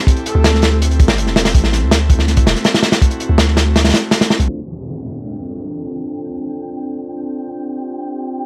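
A dry, crackly, low-passed sound frames this raw, nostalgic drum and bass excerpt at 163 BPM in D minor, where a crunchy, saturated breakbeat kit with a tight kick and a deep, mellow 808-style bass drive the first 4.5 seconds under an airy, chorused pad with 12-bit grit and a brief breathy, flute-like lead with dub echo, before a filter sweep, a downlifter and a very quiet bell-like electric piano stab usher in a Dm7 passage crowned by a twinkling granular shimmer from 6.2 seconds.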